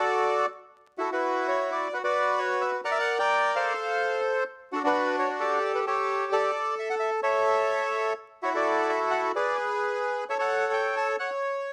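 In 4/4 at 129 BPM with a rubato feel, this short tango excerpt moves with a flexible pulse that gives it a playful yet elegant character. A single bandoneon carries the whole piece as a solo voice from 0.0 to 11.7 seconds, its reedy, bright tone sitting up front and ranging from D4 to A5. The harmony shifts often, passing through colourful chords such as E13sus4, Bbmaj13 and G#dim before settling on A and ending on an unharmonized moment at 11.2 seconds. Light reverb gives the instrument a touch of space, while a layer of vinyl crackle adds an aged grain to the sound. Cut from a longer piece, it offers a brief, graceful glimpse of solo tango expression.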